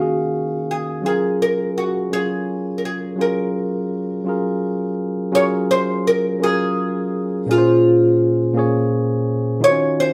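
A wet, reverberant room surrounds this brief cut from a longer R&B piece, a late-night, yearning track in a slow 6/8 at 56 BPM. A woody, plectrum-plucked oud with doubled strings carries the melody up front throughout, while a clean, bright tine electric piano accompanies it just as close. The piano moves through lush extended chords from Ebm11 and Gbmaj9 to Bbm9 before settling on Ebm9 near 9.6 seconds.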